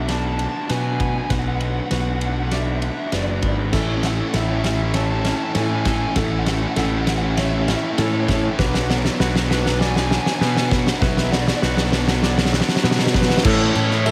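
Soaring and cinematic, this post-rock passage, cut from a longer piece, moves at 99 BPM in a straight 4/4 and builds steadily over Bm and A chords. Up front, a bright, overdriven fuzz bass drives the low end beside a loose indie drum kit with a fat snare, punchy kick and dark crash and ride cymbals, the drums working through an extended fill as the tension rises. A dark, overdriven garage guitar carries the melody through an analog delay, while a fuzz guitar riff sits in the background and a bright, overdriven electric guitar adds a second riff from 3.7 seconds. Beneath them, a felt-muted upright piano plays mellow, intimate arpeggios with audible action noise and delay, joined by very quiet, clean, twangy electric guitar arpeggios. A very quiet pedal steel guitar, played with fingerpicks and slide, holds compressed sustained chords with volume swells until 13.4 seconds, and the whole band sits in a small room ambience.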